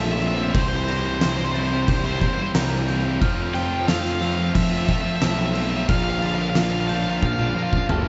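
A cinematic, soaring stretch of post-rock cut from a longer piece opens with a bright, overdriven stack guitar singing the melody with a slapback echo, over a dense bed of guitars and bass. Beneath it, a picked, distorted guitar sits in the background playing a riff, joined by a very quiet, dark fuzz guitar also playing a riff, while a clean, hollow-bodied semi-hollow guitar fingers very quiet arpeggios. A round, overdriven fuzz bass sits up front, and a ringing, bell-like glockenspiel struck with hard plastic mallets adds high arpeggios with its own slapback echo. An oversized, low-tuned drum kit joins at 0.2 seconds with a boomy kick, fat snare, toms and crash in a pumping, stone-like room, and a very quiet, shimmering, ethereal pad with an octave-up sheen and granular texture swells in at 0.8 seconds on sustained chords. The harmony moves through major-seventh and dominant-seventh chords, and a drum fill at 7.2 seconds carries the passage to its close.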